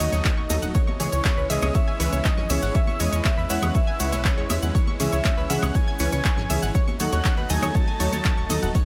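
The sound is close and dry, with little reverb, and a punchy electronic kick drum sits up front, entering at 0.2 seconds. This short excerpt of progressive house is driving and emotional, built over a straight four-four pulse and a cycle of D#dim, C#m and E6 chords. A dark, funky plucky analog bass with tube saturation pumps against the kick beneath a lush supersaw pad held in the background, while a round analog pluck with cassette-tape colour and a detuned unison pluck spin out arpeggios and stabs through delay. On top, a full, soft octave-layered synth lead carries the melody with chorus, phaser, vibrato and a gritty 12-bit sampler edge, joined an octave higher by an airy, dreamy lead playing a second line. The rhythm bed layers a deep house drum kit with smooth hats, handclaps, ride and woodblock, a very quiet soft brush drum kit on hi-hat and snare, a grainy, bright cabasa, and ringing congas joining at 0.1 seconds.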